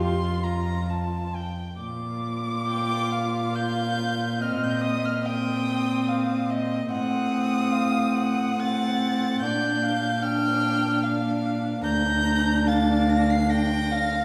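Classical string quartet in a slow, serene romantic movement in 3/4 with rubato, cut from a longer piece, where a dark first violin carries the melody with vibrato above a warm second violin line and a viola's intimate accompaniment, the upper three sounding airy and sul tasto, while a pure, floating cello holds the bass up front, all heard from further back in a reverberant recital hall.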